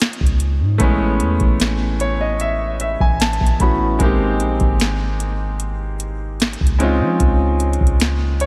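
A straight 4/4 groove at 75 BPM from a booming analog drum machine, with deep kick, crisp snare and metallic hi-hats carrying a tape-warm, small-room character up front, anchors this smooth, tender contemporary R&B fragment; a soft, round, sine-like 808-style bass with a fast attack and dark, decaying tone joins at 0.2 s, while a bright, brilliant concert grand piano, natural and up front with a deep low end, moves through Dbmaj9, Amaj9 and Abmaj9 before returning to Dbmaj9, adding fills at 1.6 s and 8.0 s amid a light digital reverb.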